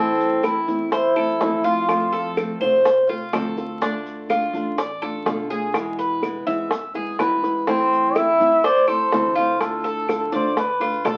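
A straight 4/4 Cuban son and guajira groove at 124 BPM, driven by tight, high-tuned bongos with woody claves and grainy maracas in the background, carries this nostalgic, sultry passage in A harmonic minor, where a veiled, breathy cup-muted trumpet with light vibrato sings up front at the start and again from 7.7 seconds over the metallic double strings of a picked Cuban tres, a small fingerpicked nylon-string guitar and a thumpy gut-string upright bass, all set in wet studio reverb and the crackle of a very old 78 rpm record.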